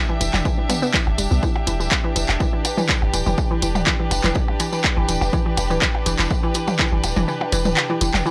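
Hypnotic and cool, this short cut from a longer minimal techno piece moves at 123 BPM in a straight 4/4, sitting on an E minor seventh chord. A close, intimate chamber string section bowed softly sul tasto with light vibrato provides a hushed texture, while a hollow, bouncy square-wave pluck carries the riff, detuned and layered with noise, colored by chorus, phaser and tape echo. Both of these, along with a deep sine sub bass with a pitch-drop attack, breathe with sidechain pumping. Up front, a punchy analog drum machine supplies handclaps and hi-hat, joined by a jingly acoustic tambourine and electronic toms and percussion blips trailed by analog delay. The punchy kick drum drops out from 7.3 seconds, and a barely audible swell arrives at 8.3 seconds. The sound is dry and gritty, a hardware recording with light reverb and a cassette-tape grain.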